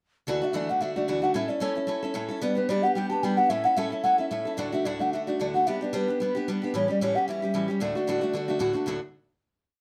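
Driving along at 223 BPM in 4/4 with a light swing on the eighths, this short, complete Celtic reel in D major feels rollicking and bright. A distant, hollow wooden flute carries a tongued, motif-based melody in balanced phrases, its pure tone touched with vibrato. Up front, a picked steel-string acoustic guitar strums steady eighths in open chord shapes with a woody, old-string character, moving through Dadd9, A, G and A7. The flute finishes its line just before the guitar lands on a final chord at 8.9 seconds, all in a moderate studio reverb.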